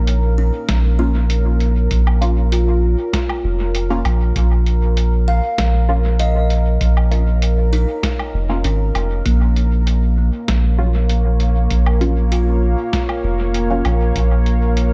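Ambient dub at 98 BPM in 4/4, this deep, hazy excerpt from a longer piece sits in Bb minor, resting on Bbm before moving to a rootless Eb7 chord at 9.3 seconds. A soft, round sub bass is up front from the start, its triangle and square wave tones sustained low beneath a dark, moody pad of detuned sawtooth unison with a sub octave, slow attack and long release, coloured by chorus, built-in reverb and vintage 12-bit sampler grit. A woody kalimba rings out bright, airy arpeggios through analog delay, while a muted, mellow filtered chord stab with phaser, analog chorus and dub echo enters at 1.0 seconds and stays in the background. The lo-fi sampler-style kit brings a muffled, tape-warm hi-hat, medium-tuned snare and woodblock treated with dub echo, and a very quiet, dry electronic kick joins at 0.7 seconds. The mix is fairly dry overall with a soft, rolled-off top end.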